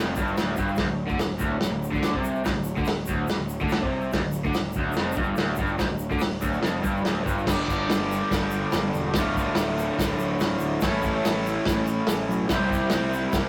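A rough rehearsal-room recording with light reverb and saturation frames this menacing, swaggering garage rock excerpt in D minor, set at 144 BPM in a straight 4/4. An overdriven, double-tracked electric guitar sits up front with a bright, raw riff, over a punchy picked bass thick with fuzz, while a muffled, lo-fi acoustic kit with a tight kick and rolled-off top drives crash, hi-hat, kick and snare, and a grainy egg shaker rattles in the background. After opening on D minor, the harmony shifts to G at 7.5 s, returns to D minor, then moves to A and C.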